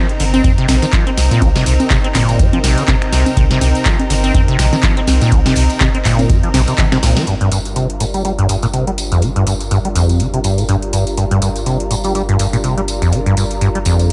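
A squelchy, resonant sawtooth acid bass sits up front, its overdriven riff of fast-attack, decaying notes shaped by a filter sweep and thickened with lush chorus. This hypnotic, raw acid house cut moves at 123 BPM in 4/4 with a swung 16th-note feel, in G minor tuned to A4 = 436 Hz. Beneath it, a round sine sub bass pumps with the sidechain. A thick, detuned unison pad of sawtooth and square waves holds bright, slow-attack chords that also pump. A booming, tape-warm analog drum machine, re-recorded in a large room, supplies a crisp snare, metallic hats, ride, toms, congas, finger snaps and handclaps, with a jingly, close-miked acoustic tambourine on top. A deep electronic kick drives the drop from 0.4 to 6.9 seconds, then a drum fill and a band accent lead into the second section at 7.3 seconds, where the harmony moves from Cm7 to Gm7, all in a dry mix taken from a longer piece.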